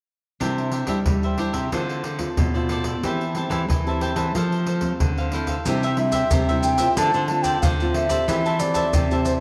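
Lively and playful, this samba and choro excerpt in C major moves at 92 BPM in a straight 4/4, with crisp picked cavaquinho, a fingerpicked nylon-string guitar with fresh strings and a warm thumb-plucked nylon-string guitar bass over up-front surdo, pandeiro and maracas played with soft hands, and a breathy, wooden baroque flute with tongued notes, vibrato and lifted highs enters at 6.0 s for the second section, its unsteady line carrying the tune over the continuing band inside a moderate plate reverb.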